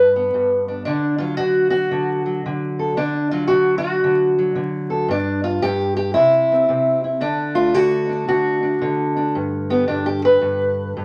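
A dark, boxy, fingerpicked steel-string parlour acoustic guitar sits up front in this laid-back, soulful acoustic country blues in G major, moving at 113 BPM in 4/4 with a swung feel. The guitar works through G, D and C, with a brief chordless stretch around 5.1 seconds, before a new section opens at 9.4 seconds, where it takes a short solo back on G. Moderate studio reverb and a layer of vinyl crackle give this brief cut from a longer piece an old-record character.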